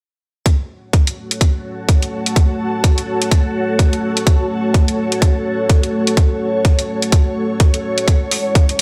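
A tight, up-front electronic kick and bright electronic hi-hats with studio reverb open this bouncy, gritty bass house excerpt at 0.5 s, swinging at 126 BPM in F# minor, before a deep, moody analog pad of detuned sawtooth and sub-octave layers with chorus and sidechain pumping enters at 1.2 s holding slow-attack chords that move from F#m to C#m, joined at 1.3 s by a higher ethereal, airy pad with a noise layer, phaser, ensemble chorus, its own reverb and pumping, the whole production dark and set in a light digital ambience.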